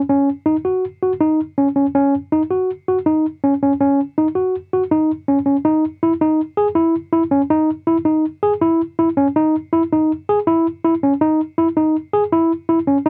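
A dry, close recording with a 1970s studio feel opens this short progressive instrumental cut from a longer piece, set in E major at 162 BPM in an intricate 5/4. A lone tine electric piano carries it from 0.1 to 13.1 seconds, sitting up front with a worn, slightly out-of-tune tone lightly overdriven through a combo amp, its line staying between C#4 and G#4. The mood is bright, shifting into a new section at 5.7 seconds.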